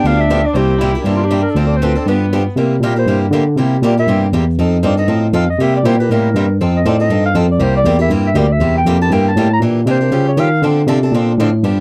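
This lively, swinging passage of jazz manouche opens with all four parts at once at a fast 238 BPM in 4/4, its eighth notes lightly swung in C mixolydian. A mellow clarinet carries the melody with subtone, light vibrato and scooped notes, while a bowed violin with a gut-string, reedy tone adds a brief second line that stops at 2.5 seconds. Underneath, a bright, freshly strung acoustic guitar picks out the swing accompaniment up front, and a barky, clean tine electric piano takes the bass role, sitting loudest and most direct in the mix. From 2.6 seconds the clarinet moves into a solo over changes that circle between C7 and F7 before turning through Em7b5 and Aaug7 to Dm7, and it drops out at 10.6 seconds as guitar and electric piano carry on to the end. The sound is dry and close, like a 1970s studio session with only light reverb, and the clip is cut from a longer piece.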